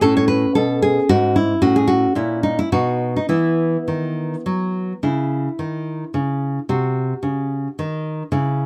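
In a lilting 3/4 at roughly 102-113 BPM, played with a flexible rubato, this brief, radiant baroque-style dance features a solo nylon-string guitar, fingerpicked with classical poise and a warm, up-front tone spanning G#2 to C#5. The phrase opens in E major, moving through chords such as F#m/A, A#dim and B before shifting toward C# minor at 5.0 s and touching a Cdim at 6.7 s. Close, detailed microphones and a dry room capture every nuance of this fragment from a longer piece.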